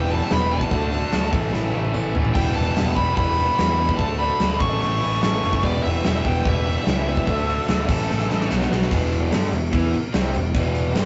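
Swaggering and brooding, this classic rock cut from a longer piece is driven by a huge, up-front arena drum kit with bright cymbals, a punchy kick and a pumping room sound, with fills at 1.5 and 8.1 seconds, over a punchy fuzz-overdriven bass. A raw, overdriven garage guitar and a very quiet, tight distorted guitar both riff through an Em, D, A cycle, while a dark, biting overdriven lead carries the melody until 8.5 seconds, as the chords land on B before returning to Em. A jingly, close, dry tambourine sits faintly underneath, and the whole rough rehearsal-room recording has a dull top end and a moderate studio reverb.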